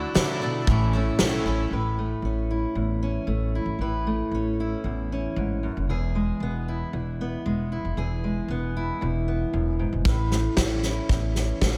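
An uplifting, warm stretch of indie folk at 115 BPM in A major, cut from a longer piece with a building arrangement. A fingerpicked steel-string acoustic guitar sits up front throughout, joined at the start by a full-bodied, shimmering twelve-string acoustic guitar whose octave-doubled picking carries a slapback echo and a touch of finger squeak before it stops at 1.7 seconds. An up-front upright bass plays pizzicato across the whole recording, its woody, growly tone giving a dark low end. A natural country drum kit with a fat snare and tight kick, heard in a small room, plays only briefly near the opening and returns at 10.1 seconds. The chords move from Dadd9 and A into Aadd9, shift to E, and settle back on Aadd9, all under a light reverb.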